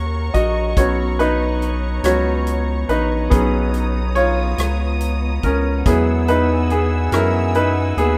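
A clear, polished concert grand piano takes a solo in this tender, heartfelt six-eight pop ballad excerpt at a slow 47 BPM, sitting up front over a round, deep analog bass and an intimate, close studio string section holding sustained, bowed chords with a soft attack and light vibrato. A natural country drum kit joins at 0.3 seconds with hi-hat, rim click and a punchy kick, and the harmony moves from F# to Bsus2 before settling on Eadd9 at 5.9 seconds. Light studio reverb colours the rough home-demo mix.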